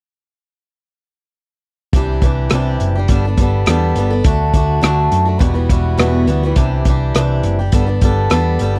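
Jangly and open-road in mood, this short excerpt of folk rock and heartland rock moves at 104 BPM in a straight 4/4, set in G major. A picked, swing-style acoustic guitar carries the accompaniment up front, its boxy tone marked by audible finger squeak as it moves through Cadd9, Gadd9, D, Emadd9 and back to Cadd9 and Gadd9. Beneath it, a hollow-body short-scale electric bass, picked and amped, adds a dark, round low end. A vintage drum kit plays hi-hat, kick drum and rim click, its sound muffled and lo-fi with a tight kick and a rolled-off top, as if caught in a small room. All three parts enter together at 1.9 seconds, and the whole has the dry, close feel of a 1970s-style studio recording with little reverb.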